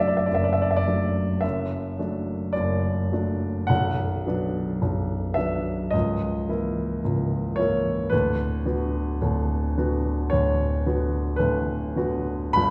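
A baby grand piano, intimate and up front with its action noise clearly audible, carries this short solo fragment of a romantic nocturne, moving in free rubato at about 49-56 BPM in 4/4. The mood is nostalgic and tender, the harmony passing from D/F# to Bm, then A#dim/C# and Bm/D. A generous recital-hall reverb with a 1.6 s decay surrounds the natural piano tone with the resonance of a church or concert hall.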